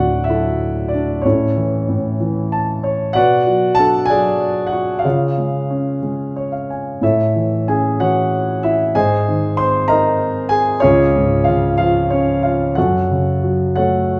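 A warm concert grand piano carries this brief classical excerpt alone, its deep bass and up-front presence filling a reflective, melancholic piece in lyrical solo style. The music moves in 6/8 at 62 BPM counted in dotted quarters, with a rubato feel that lets the phrases breathe freely. The harmony wanders from D through A and B minor to C-sharp, then on to A, G-sharp and C-sharp again before settling on F-sharp minor, giving the passage a searching, unresolved cast. Brief piano fills appear at 2.2 and again at 6.0 seconds, adding small flourishes. The instrument sits in a recital hall with moderate reverb, giving the notes a gentle, spacious tail, and the piece is cut from a longer work, ending at 14.2 seconds.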